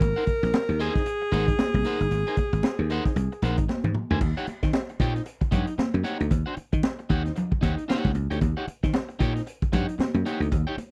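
A breathy, close-miked alto saxophone leads this funk excerpt, its whispered tone and light vibrato carrying the melody in the opening 3.7 seconds before it drops out. Underneath, a dry thumbed slap bass sits up front with a growly, foam-muted bite and tube saturation, while a crunchy breakbeat drum kit adds a punchy kick, high-tuned snare and dark cymbals with a gritty, rolled-off top. An electric guitar at the edge of break-up supplies twangy, slightly broken-up accompaniment, and ringing, high-tuned congas sit in the background. At 114 BPM in 4/4 with a swung sixteenth-note feel in Eb mixolydian, the energetic groove moves from an Ab9 to an Eb7#9 at 4.2 seconds, just after a drum fill. The sound is a dry, close 1970s-style studio recording with little reverb, cut from a longer piece.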